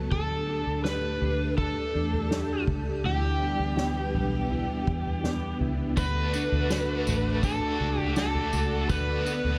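Dream pop at 82 BPM in D major, blissful and floating, with a lush hall reverb over a vintage string machine holding slow-attack sawtooth chords and a mellow, dark electric guitar playing arpeggios through ensemble chorus and digital delay, anchored by a round, foam-muted fingered bass and a distant, roomy soft-mallet kit with punchy kick, toms and tambourine. Up front, a bright overdriven slide guitar carries the melody through digital delay over chords moving from Gsus2/D to Em7. At 6.0 seconds a crunchy, double-tracked overdriven guitar enters with tremolo and analog chorus as the harmony moves to D and then Bm7, in this excerpt cut from a longer piece.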